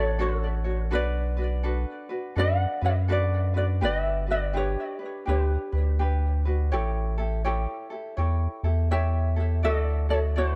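Dark, lightly reverberant studio sound frames this languid, relaxed Hawaiian piece at 83 BPM in swung 4/4 and D major, where a bright, thumb-plucked ukulele carries the melody up front through a digital delay, a second, softer fingerpicked ukulele supplies accompaniment, and a deep, round analog bass with a nasal, sustained, evolving tone sits prominently beneath, as the harmony moves through Dmaj7, Bm7, Gmaj7 and A7 before landing on Dadd9 at 9.6 seconds.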